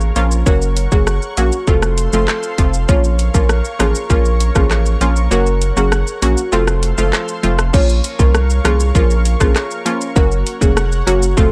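A saturated, deep sine sub bass sits up front in this hypnotic, tough dancehall excerpt at 99 BPM in Bb harmonic minor, alongside a tight, electronic island pop kit with metallic hats, handclaps, rim clicks, shaker and crash under vintage 12-bit grit, punchy detuned sawtooth chord stabs pumping with sidechain and chorus, a lush wave-folded unison pad holding bright sustained chords, and a woody marimba melody with delay entering at 0.5 s over a Gb, F, Bbm progression, as the kick drops out from 5.3 to 7.7 s before the second section begins.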